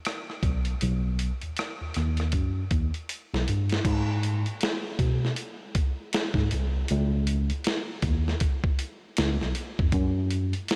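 A dusty, sampler-style drum kit opens this short R&B and neo-soul excerpt, with a thumpy kick, a medium-tuned snare, rim clicks, hi-hat and crash cymbal sitting up front, the kit compressed and gritty. At a relaxed 79 BPM in 4/4 with a swung sixteenth-note feel, the groove has a smooth, late-night mood. A tine electric piano enters at 0.4 seconds and carries the bass line between B1 and B2, its worn, slightly out-of-tune tone lightly overdriven and placed close and direct. A drum fill from 3.1 to 3.8 seconds leads into a new section that runs to the end. Light digital reverb adds a faint sense of space around the two parts.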